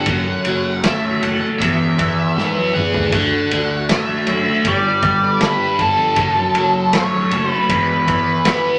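A biting, double-tracked overdriven guitar riff with phaser opens this trippy, hazy psychedelic rock excerpt at 79 BPM alongside a distorted octave-fuzz lead melody, a reedy, breathing harmonium holding chords in the background and a round, punchy fuzz bass, while a vintage drum kit with dark cymbals and a pumping room sound joins at 0.1 seconds and plays a fill at 2.4 seconds, and very quiet, ringing congas played with soft hands sit underneath, all in a wet club reverb over an F#m, E, D, Gadd9 progression.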